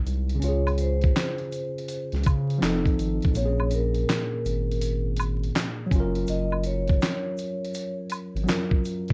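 A gritty, thumpy sampler-style drum kit of kick, fat snare, hi-hat and handclaps sits up front in this nostalgic, hazy lo-fi hip hop excerpt at 82 BPM in Bb minor with a swung 16th feel, its kick dropping out from 3.4 to 4.8 seconds, while a deep, saturated sine sub bass, a worn, slightly out-of-tune tine electric piano with light overdrive and a low-pass filter, a close, dry egg shaker and woodblock, and a mellow soft-mallet vibraphone melody with slow motor vibrato entering at 0.4 seconds move through Dbmaj7, F7, Bbm7 and Gbmaj7 under light reverb and vinyl crackle.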